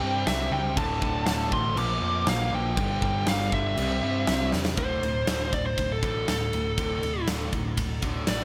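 Bright 1980s-style digital production gives this aggressive, driving hard rock excerpt a polished sheen, with a lush hall reverb and a touch of small-room ambience around a straight 120 BPM groove in D minor. A dark, high-gain lead guitar with distortion and delay sits up front, carrying the melody from the start and moving into a solo at 4.8 seconds over chords that run from C5 through D5, Bb, G5 and C back to D5. Behind it, three picked rhythm guitars play the riff: a double-tracked crunchy overdriven part that drops out at 4.8 seconds, a hollow-body semi-hollow guitar with subtle chorus, and a scooped, distorted high-gain guitar. An amped, growly electric bass adds punch underneath, while a big, airy acoustic drum kit enters at 0.3 seconds with a punchy kick, a medium-tuned snare, ride and crash cymbals, and a fill at 4.5 seconds.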